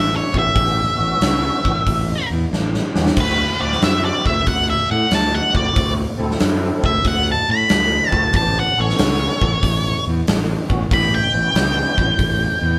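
A swung 4/4 groove at 93 BPM sets up this gritty, swaggering blues rock and southern rock excerpt in A mixolydian, moving from A7 to D7 at 3.2 seconds and back to A7 at 8.4 seconds. An up-front, distorted octave-fuzz lead guitar solos throughout, over a growly, overdriven fingered bass and a big acoustic drum kit with a punchy kick, medium-tuned snare, crash and hi-hat, dark and rolled-off on top, with a drum fill from 2.5 to 3.2 seconds. A reedy, bright tonewheel organ holds sustained chords through a slow rotary speaker and chorus vibrato, and the band sounds like it is playing live together in one large studio room with moderate reverb.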